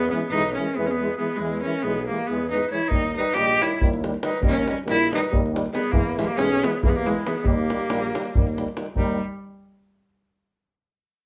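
This short cut from a longer piece sounds like a band playing live in one room, with a moderate studio reverb giving the ensemble a natural sense of space. It is Balkan folk in a brass-band style, restless and virtuosic, moving in a straight 7/8. A bowed cello carries the melody up front, its tone rich and intense with vibrato and a smooth top. Alongside it a warm clarinet plays a classical-style second line, while a tuba anchors the bass with vibrato from a distant, roomy position. A mellow French horn with light vibrato and a euphonium add accompaniment in the background as the harmony shifts between E and Eb. A deep, acoustic davul joins up front at 2.9 seconds and drives the rest of the passage to its close at 9.2 seconds.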